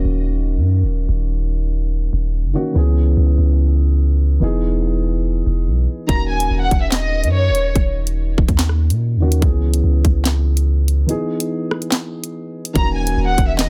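A half-time drill groove at 144 BPM in Eb phrygian, this ominous, tense hip hop excerpt opens on a dark, boxy concert grand piano under a low-pass filter and a deep, up-front 808-style bass holding long sine tones, with the drum kit of hard-clipped kick, sharp snare, bright hats, handclaps and rim clicks arriving at 6.1 s. A violin section, bowed sul tasto with vibrato and a soft attack, sings an intimate, filtered melody with delay high above, while a very quiet, nasal, detuned analog pad with chorus slips in at 12.8 s. The chords move through Ebm7, Dbm7 and Emaj7 in a dense, heavily limited, dry mix.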